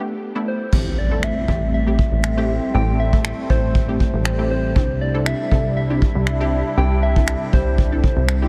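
A round, FM-toned synth lead with chorus and analog delay carries the melody from the start, joined by a detuned, lush unison pluck over a Gadd9 chord in this confident, energetic dance-pop passage at 119 BPM in A minor. At 0.7 seconds the harmony shifts to Am7 as a very quiet electronic impact lands and a punchy, wave-folded analog bass enters up front, alongside a vintage brush drum kit whose punchy kick, finger snaps and crash carry a rolled-off top. A sweeping, resonant pad with slow filter swells and sidechain pumping warbles beneath, moving to Cadd9 at 4.8 seconds, all set in light reverb and small room ambience.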